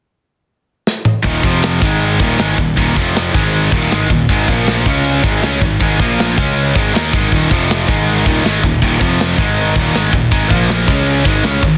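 A tight, up-front metal drum kit opens with a short fill at 0.9 seconds, its tight kick edged with soft clipping over a medium-tuned snare, crash, ride and toms, before two bright, high-gain distorted guitars and a growly, fuzz-soaked picked bass crash in at 1.2 seconds. This epic, relentless heavy metal cut drives at 159 BPM in straight 4/4, the guitars playing a riff of power chords cycling through Eb5, F5, Ab5, Bb5 and Db5 while the overdriven bass holds down the low end. The small room ambience sits behind a dense, heavily limited modern master that keeps the whole barrage loud and compact.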